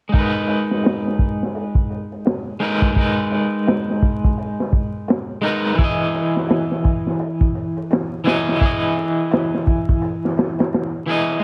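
A crunchy, gritty breakbeat kit with a tight kick, medium-tuned snare and dark, rolled-off hats sits up front alongside a twangy, slightly broken-up electric guitar with tremolo, moving from G#madd9 to Emaj7 at 5.8 seconds in this cinematic, melancholic trip hop fragment at 85 BPM with a lazy 16th-note swing, all colored by light studio reverb, worn cassette warble, pitch drift and vinyl crackle.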